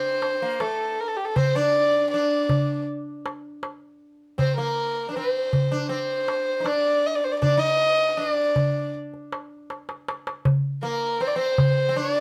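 Arabic maqam ensemble music in D maqam hijaz, melancholic and longing, moving at 79 BPM in a straight 4/4 in this short excerpt cut from a longer piece, with light reverb giving the sense of a band playing together in one room. A dark, nasal violin carries the melody up front, its soft-attack sul tasto bowing airy and intimate with light vibrato, while a buzzing sitar plays a quieter second line, its sympathetic strings shimmering around a round, plucked tone. A crisp metal-shell darbuka played with soft hands sits close and dry from 0.2 seconds, and its fill at 9.7 seconds leads into a new section at 10.4 seconds.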